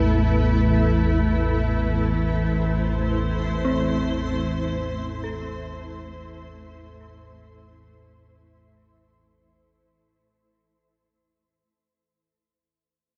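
Unfolding in free time, this desolate, cavernous dark ambient drone in A minor, tuned to A4 = 436 Hz, sets a warbling, chorused analog drone and a blurred, bright granular cloud pad of sustained chords with shimmer reverb up front through a fade-out to 9.4 seconds, while an eerie, inharmonic detuned synth bell enters at 3.6 seconds with tremolo-laced arpeggios that linger to 12.3 seconds, all bathed in a huge reverb and dark, rolled-off top end in this piece cut from a longer work.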